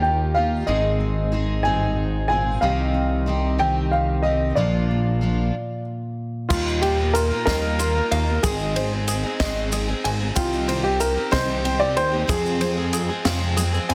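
Anthemic and uplifting, this indie folk passage in a lilting 6/8 builds its arrangement as it goes, cut from a longer piece. A dark, mellow upright piano with a woody, slightly detuned tone carries the melody over a fingerpicked jumbo steel-string guitar sitting in the background and a shimmering, octave-doubled twelve-string that is picked with fresh, full-bodied strings. Underneath, a glossy, retro synth bass with a nasal pulse-wave bite and a plucky filter sits up front, thickened by chorus. After a brief stop, the band grows at 6.5 seconds as a dry cocktail kit with a punchy kick, high-tuned snare and dark cymbals arrives with a grainy, distant tube shaker and a twangy, plunky banjo playing arpeggios in the background. The fingerpicked guitar drops out at 7.5 seconds, leaving the twelve-string and banjo to fill the accompaniment under the piano, while light reverb and a small room ambience frame a dense, heavily limited modern master.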